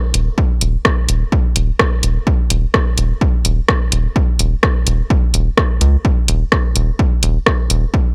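Minimal techno at 127 BPM in 4/4 with a light 16th-note swing, cool and quirky in mood, cut from a longer piece and lasting about 8 seconds. A rubbery, hollow square-wave bass with a nasal, bouncy filter pluck pumps with sidechain movement beside the punchy analog kick, which enters at 0.4 seconds and sits up front alongside a layered electronic kit of warm, tape-warmed hi-hats and rim clicks. The sound is dry and gritty, like a hardware recording, with little reverb.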